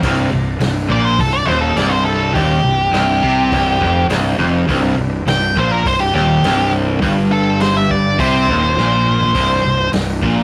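Swaggering and gritty, this blues rock power trio cut with a southern rock lean moves at 103 BPM in a straight 4/4 over a C5 power chord. A crunchy, double-tracked rhythm guitar drives the low riff up front alongside a growly, overdriven fuzz bass, while a vintage acoustic drum kit with dark cymbals and a punchy kick adds a short fill at 8.8 seconds. A dark octave-fuzz lead guitar carries the soloing melody from 0.9 to 9.9 seconds, all captured in a rough rehearsal-room sound with saturated character and moderate reverb.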